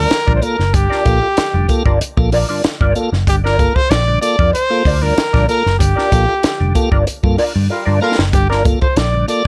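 A straight 4/4 funk groove at 95 BPM in G minor, settled on a Gm7 chord, opens this short, hypnotic cut from a longer piece. A compact cocktail drum kit sits dry and up front with a high-tuned snare, hi-hat and a punchy kick, while a vintage foam-muted picked electric bass holds the low end with a dark, round, amped tone. A hollow-body jazz guitar adds clean, wah-coloured accompaniment, and a tonewheel organ drops piping, scooped stabs through a slow rotary speaker with slapback echo. Over them a warm jazz-style trumpet carries the melody up front with light vibrato and plate reverb. The band hits an accent from around 5.8 seconds, and at 7.7 seconds a drum fill arrives as a distant, roomy horn section briefly plays a second line in pop style with slapback echo.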